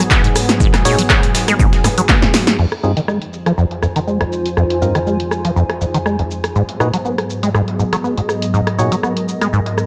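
A squelchy, resonant sawtooth acid bass sits up front in this driving, raw acid house excerpt at 121 BPM with a 16th-note swing, playing a bright riff coated in analog chorus, cassette tape grit and tape echo, pumping against the beat while a filter sweep runs over it from 2.6 seconds onward. A dry, punchy electronic kick drives the opening until 2.2 seconds, and a punchy analog drum machine with cabasa, crash, handclaps, hi-hat, rim click and snare runs throughout, its percussion, hats, cymbals and snare darkened by low-pass filters and set in studio reverb, with a drum fill at 2.1 seconds closing the opening drop. Beneath, a very quiet, gritty sampler-style soul kit of hi-hat, shaker and snare adds tape-worn texture as if re-recorded in a large room. A lush, thick, detuned unison pad holds sustained chords moving from Abm7 to Fm7 and back, warbling with vintage chorus and pumping, while a hollow, mellow organ stab punctuates the groove with chorus and tape echo. 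From 3.7 seconds a cloudy, wave-folded granular pad drifts in higher up, blurred and evolving in its own reverb, all within a light room ambience.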